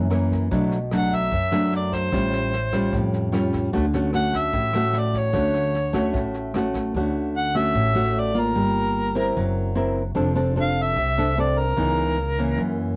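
Breezy and relaxed, this bossa nova excerpt in D major at 149 BPM sets a full-bodied, fingerpicked classical nylon-string guitar up front with audible finger squeak and cassette-tape colour, a woody pizzicato upright bass with steel strings and transformer saturation, and a small-room brush kit with punchy kick, rim click and a rolled-off top that sits in the background until 6.8 s, while from 1.0 s a warm jazz-style harmonica solo with light vibrato and scooped notes leads up front over chords such as Bm7, A7alt and Dmaj7, all in a moderate reverb with a homespun cassette character.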